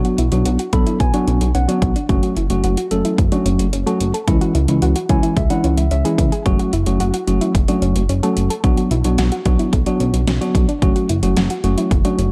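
Light reverb and a digital ambience wrap this nocturnal, driving synth-pop excerpt, which moves at 110 BPM in a straight 4/4 in F# minor. A mellow tine electric piano sits up front with a clean, speaker-coloured tone, carrying the accompaniment and adding fills at 0.5 and 4.8 seconds. Beneath it, a glossy, retro synth bass blends pulse and sawtooth waves with pulse-width modulation, detuning, chorus and a filter sweep, holding sustained low notes with a fast attack. A quieter soft, round pluck traces arpeggios in a dark, gentle voice built from triangle, sine and detuned sawtooth with a sub octave, a moving notch and a decaying filter pluck, treated with chorus and slapback echo. The electronic, layered pop drum kit pushes forward with a punchy kick, fat snare and metallic hats, overdriven and re-recorded in a small room. The chords cycle through Bm, F#m and C#m across the whole 12.3 seconds, with every part playing throughout.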